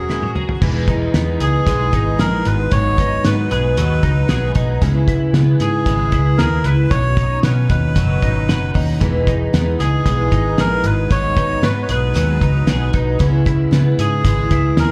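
A reedy, breathy melodica carries the tune over shimmering picked twelve-string acoustic guitar, bright twangy twelve-string electric arpeggios with ensemble chorus and slapback echo, a round foam-muted vintage bass and a cloth-damped thuddy drum kit that opens with a brief fill at 0.1 seconds, in this nostalgic, youthful jangly indie pop excerpt at 114 BPM, heard live through a club PA with light reverb as the chords move from F#add9 through Emaj7, G#m7, C#m7 and Badd9 before returning to Emaj7, G#m7 and C#m7.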